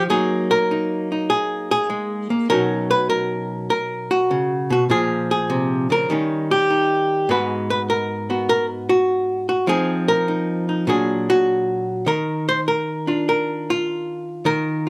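Lightly reverberant and warm, this short excerpt of relaxed solo jazz swings gently in four as a dark, clean, compressed hollow-body archtop guitar, miked and amplified and placed up front, moves through lush picked chords such as Gb69, Bmaj9 and Abm9 before settling on an open Ebsus2 near 12.1 seconds.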